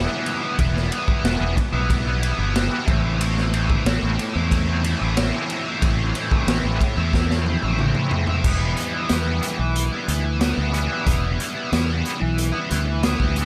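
Psychedelic rock with a mysterious, hypnotic pull, moving at a steady, straight mid pace through a brief passage cut from a longer piece. A bright, overdriven electric guitar riff sits up front, picked and double-tracked through a rotary speaker, over a dark, round fingered bass, while a raw garage drum kit enters at 0.3 seconds with a boomy kick, gritty saturation and a pumping small-room sound. A drum fill from 7.1 seconds leads into a new section at 8.4 seconds, where the harmony settles onto an Em7 chord, all framed by light reverb and small room ambience.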